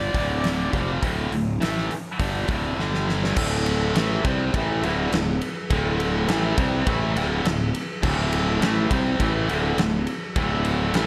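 A mellow, distant harmonica with light vibrato opens this smoky blues rock and southern rock excerpt, sounding only briefly over a tight, bright, double-tracked distorted guitar riff and a growly fuzz bass in D minor at 103 BPM. The big rock kit, dark and smooth with a fat snare and punchy kick, comes in at 0.1 seconds and plays a fill from 2.8 seconds as the chords move from Dm to G5, landing on D5 at 3.4 seconds for the rest of this gritty power-trio passage. The drums sit in a big room alongside the up-front guitar, and light studio reverb rounds out the mix.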